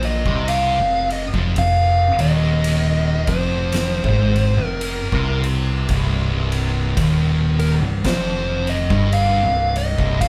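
Stoner and doom metal at a sludgy, heavy 56 BPM with a swung 4/4 feel, this short cut from a longer piece has a dark, up-front fuzz lead guitar carrying the melody over two thick fuzz guitars grinding out the low riff (one of them very quiet), a growling picked electric bass with overdrive, and an oversized low-tuned drum kit whose punchy kick, fat snare and dark ride cymbal sit in a bright, pumping stone room, all played live in one room with light reverb as the harmony moves from F5 to Cm at 5.9 seconds.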